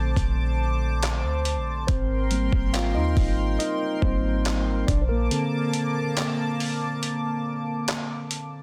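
A mellow tine electric piano leads this tender, romantic contemporary R&B excerpt at 70 BPM in Bb major, over a shimmering, detuned pulse-width pad with sidechain pumping, as the chords move from Bbmaj7 to Abmaj9 and back. Near the start, a very quiet electronic downlifter passes by, and a dusty sampler-style kit of gritty, overdriven kick, hi-hat and handclaps sits up front beside a deep, boomy 808-style sine bass. The bass stops at 5.3 s for a break, leaving piano, pad and drums in digital ambience under a dense, heavily limited modern master.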